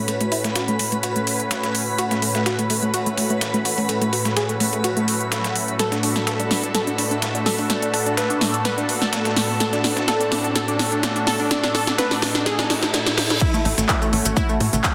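A dense, heavily limited mix sits in a wet digital room, opening on a euphoric, hopeful progressive house build-up cut from a longer piece. A lush, thick unison pad holds sustained chords up front with chorus, phaser and sidechain pumping. A round analog pluck spins detuned arpeggios through a filter sweep, tape echo and chorus, while a twinkling granular texture adds an octave-up shimmer in the background. An up-front, overdriven big-room dance kit with crisp hats, handclaps and crash rides over a gritty, sampler-style soul kit of ride and snare, and a drum fill starts at 5.8 seconds as a very quiet riser and reverse cymbal build the tension. At 13.4 seconds the drop arrives with a punchy, overdriven electronic kick and mellow acoustic maracas, followed a moment later by very quiet electronic congas and toms and then a tight, driving sequencer bass that pumps with the sidechain.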